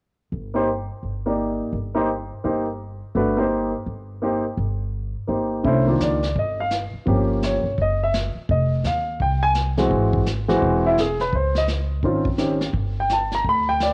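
This jazz piano trio fragment, cut from a longer performance, carries a cool, late-night mood over a swung 4/4 pulse. The pizzicato upright bass enters at 0.3 seconds, woody and growly with a thumpy, up-front presence. The grand piano follows at 0.5 seconds and carries the melody with a warm, polished tone, sitting present and forward, its sound colored by cassette tape. At 5.6 seconds a vintage brush drum kit joins as the harmony moves into darker, more chromatic territory, its punchy kick, medium-tuned snare and hi-hat given a rolled-off top and the same tape character. A moderate spring reverb and studio ambience wrap the trio in the intimate feel of a home cassette recording.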